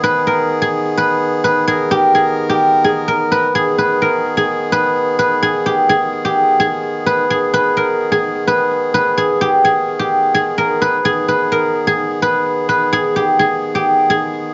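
This hip hop excerpt moves in a half-time feel and carries an eerie, dark mood. A guzheng played with fingerpicks sits up front, its silvery, ringing melody confined to a narrow band between G4 and B4. Alongside it, an accordion holds sustained chords with a reedy single-reed tone, close-miked and full. The harmony rests on one minor chord, and both parts play together for the whole 14.5 seconds. The production is dark and dusted with vinyl crackle, set in a moderate recital-hall reverb over small-room ambience.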